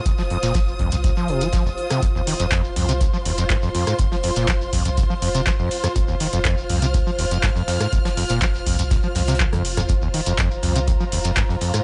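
A rich, bowed studio string section with smooth vibrato opens this gritty, hypnotic acid house excerpt, pumping to the sidechain above a squelchy, distorted sawtooth acid bass riff with tape echo and a round, mellow sine sub bass, while a deep analog kick, an electro drum machine's metallic hats, handclaps, rim clicks and toms, a very quiet acoustic kit's hi-hat and snare, and a grainy shekere drive the straight 4/4 groove to a drum fill at 9.4 seconds, in a dry hardware sound.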